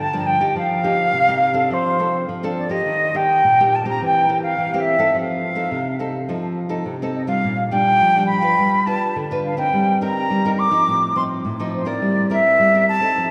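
Samba at 105 BPM, sunny and lively, with a concert flute carrying an airy, expressive melody with vibrato and tongued notes over a full-bodied, fingerpicked nylon-string guitar, both playing together for the full 13.3 seconds of this excerpt cut from a longer piece. The guitar has a classical touch and audible finger squeak as it moves through chords such as Gm7, Bbmaj9/F and Ebmaj7, while the flute sits up front in the mix yet carries a distant quality. A wet church reverb with a long 3.4 second decay surrounds the pair, giving the sound of a church or concert hall.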